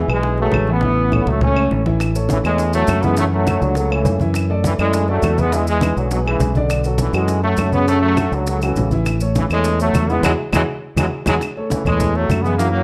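Salsa with a sunny, danceable lift, where a tight, bright trombone section carries the melody up front over a growly, punchy fingered electric bass and a dark, boxy grand piano with audible action noise, while background congas and round bongos, woody claves and grainy maracas entering at 2.0 s drive the groove through a drum fill and a band accent at 10.2 s in a moderate studio reverb.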